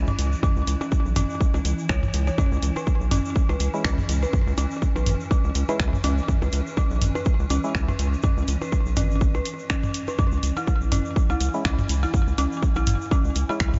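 Minimal techno at 123 BPM in C# minor, cool and hypnotic, riding a swung 16th-note feel over a single C# minor chord in this short cut from a longer piece. A punchy electronic kick sits up front beside a rubbery, bouncy square-wave bass with tube saturation and sidechain pumping, while a house kit of finger snaps and hi-hat, re-recorded in a small room, fills in around them. In the background, tape-warm toms and percussion blips echo through delay and a grainy tube shaker adds a bright acoustic edge. A dark, detuned FM bell carries the riff with an eerie, inharmonic ring, its chorus, phaser and delay giving it a mellow, lingering tail. Beneath it a swarming, tense drone evolves slowly with granular texture and its own reverb, and a hollow, percussive organ stab colored by cassette tape appears from 3.7 to 7.7 seconds and again from 11.5 seconds. The mix is dark and softly rounded, set in light digital ambience.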